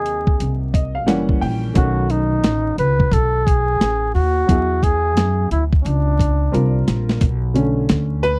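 A swung 88 BPM boom bap groove in 4/4 sets a smoky, mellow jazz-hop mood, its compressed, pitched-down sampler-style drums gritty and up front with a thumpy kick and high-tuned snare, over a woody pizzicato upright bass. A vibrato-tinged flugelhorn carries the smooth, jazz-style melody until 6.9 seconds, while a slightly detuned vintage upright piano with short sustain comps through rich chords like G#7, F#7b9 and E9, adding a fill near the start. After a drum fill, the piano takes a brief solo over Bm9 from 7.2 seconds in this dry, close 1970s-style studio sound dusted with vinyl crackle, cut from a longer piece.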